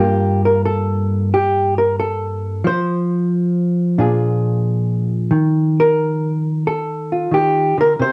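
Solo jazz with a swinging, cool mood, moving at 90 BPM in 4/4 with a firm swing on the eighth notes and tuned slightly above standard pitch. A lone hollow-body electric jazz guitar carries the whole piece, its dark, clean, fingered tone compressed and placed up front, ranging from G2 up to C5. The harmony opens on Gm9, drops to a chordless passage at 2.6 seconds, then moves through Bb7 at 4.0 seconds before settling on Ebsus2. A moderate studio reverb gives the guitar a modest sense of room, while the home cassette recording and the tape effect on the guitar add a slightly worn, lo-fi character. This brief fragment, cut from a longer performance, lasts just over eight seconds.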